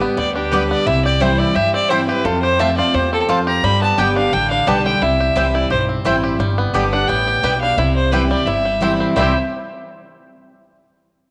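Heard through the soft haze of a home cassette recording and a lush hall reverb, this short, rustic bluegrass clip sounds joyful from its opening moment. A rich, smooth fiddle sits up front and carries the melody with light vibrato, entering at 0.2 seconds. A twangy, percussive banjo, played with fingerpicks, shares the melody beneath it, while a bright, full-bodied dreadnought guitar picks out the accompaniment, its finger squeaks audible. A woody upright bass, plucked and warm, anchors the low end, and a mandolin adds double-string stabs from the background starting at 0.5 seconds. The fiddle, banjo, guitar and mandolin all carry the grain of cassette tape, and the tune moves into a new section at 6.4 seconds before the clip ends.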